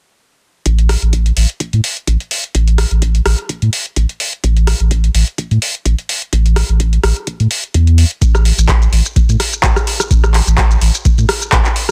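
At 0.7 seconds a round, sine-like sub bass with tube saturation and sidechain pumping arrives together with a deep, tape-warm electronic kick drum and a booming, up-front analog drum machine of handclaps, metallic hi-hats, rim clicks and shaker, all in a swung 4/4 acid house groove with a hypnotic, gritty mood. A filter sweep runs across the sub bass until the drop at 8.2 seconds, while the high-pass filtered kick keeps the pulse. The sound is dry, dense and heavily limited, and this cut from a longer piece ends at 11.9 seconds.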